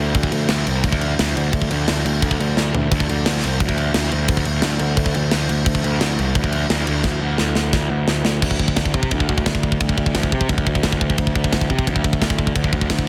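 Heavy and relentless, this heavy metal excerpt drives at 174 BPM in a straight 4/4, pairing a growly, overdriven fuzz picked electric bass ranging from C2 to C3 with an up-front, tight metal drum kit of bright cymbals, medium-tuned snare, tight kick and toms, with drum fills at 2.6 seconds and from 7.0 to 8.4 seconds before a new section begins at 8.4 seconds, all in a dry, dense, heavily limited modern master.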